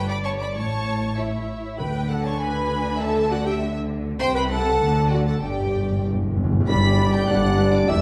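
Cheerful and spirited, this brief cut from a quick classical-period movement for symphony orchestra moves at 99 BPM in a straight 2/4, settling into G major from 4.2 seconds. Lush bowed strings carry it from the start: a violin section sings the melody high above a second, more distant violin line, while violas fill in the accompaniment and cellos and double basses, the basses sitting up front, anchor the bass with rich vibrato. Timpani struck with hard mallets punctuate briefly around 1.8 seconds and return with a crisp, dry fill from 5.4 seconds. At 6.7 seconds the winds and brass join for the closing phrase, with a mellow French horn section holding sustained chords, soft-edged trumpet stabs, an airy, hollow flute, a warm oboe and a very quiet, dark clarinet. A present bassoon adds accompaniment from 7.3 seconds, all wrapped in a recital hall reverb that gives the production a dark, warm glow.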